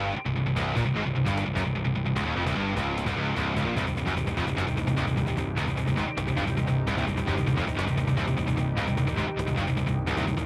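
A dry, cassette-taped home recording of heavy, relentless metal, cut from a longer piece, where an up-front scooped high-gain guitar plays a low riff together with a distant bright overdriven guitar, a very quiet double-tracked overdriven one and a fuzzy picked bass in the background, joined by a snappy close cajon and, from 3.7 seconds, a shimmering retro chorused pulse-width pad, before the cajon's kick and snare drop out between 9.8 and 10.2 seconds.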